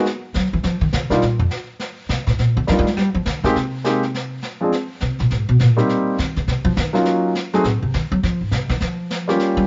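Playful and relaxed, this short jazz piano trio excerpt swings briskly at 206 BPM in 4/4, starting in Eb major and moving to Ab major at 3.6 s. The upright bass takes the solo spot from its entry at 0.4 s, its pizzicato steel strings sounding woody and up front in a range from F2 to Bb3. A clear concert grand piano with deep bass carries the melody between F3 and Ab4 at a similar level, moving through colourful harmony such as Dbadd9, Abmaj9, Ebm9 and Adim7. Brushed snare drum sits further back, with a medium-tuned snare caught naturally in a small room. The recording has light reverb and a rolled-off top end.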